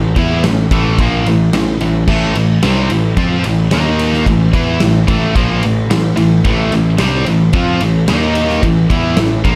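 Heavy metal in A minor at 110 BPM, aggressive and epic, where a tight, double-tracked distorted guitar riff sits up front over a growly, fuzz-overdriven picked electric bass and a big acoustic rock kit that enters at 0.2 seconds with a tight kick, medium-tuned snare, ride and crash in a bright stone room, all cut from a longer piece with light reverb and a dark production as the chords move from Am to D#5 and close on A5 at 8.6 seconds.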